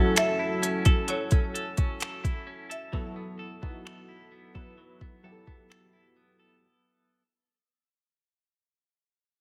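An electronic R&B drum kit sits up front, its finger snaps, smooth hi-hat and soft kick carrying a tape-warm tone through this sensual, longing contemporary R&B fragment at 65 BPM in 4/4, which fades out over its first 6.6 seconds. Round, detuned analog keys with chorus hold the F#m7 to B7sus4/F# accompaniment, while a twangy, clean electric guitar plays tremolo-treated arpeggios until 7.2 s. A woody marimba struck with hard mallets adds a short, airy, percussive melody on top, and the mix sits in light reverb and digital ambience.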